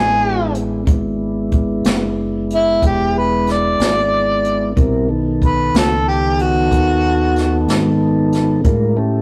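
An overdriven harmonica with vibrato and a smooth top carries the melody up front in a laid-back, gritty slow blues, its jazz-style line falling silent at 7.6 s while the harmony moves from E7 to B7 and lands on A7. Beneath it, a mellow, flute-like tonewheel organ holds sustained chords with audible key click through a slow rotary speaker, and a dark, round fingered electric bass anchors the low end in a straight 12/8 feel. A brushed jazz kit with a boomy kick, medium-tuned snare and hi-hat enters at 0.5 s, all set in a rough rehearsal-room sound with tube saturation and moderate stone-room reverb in this fragment of a longer piece.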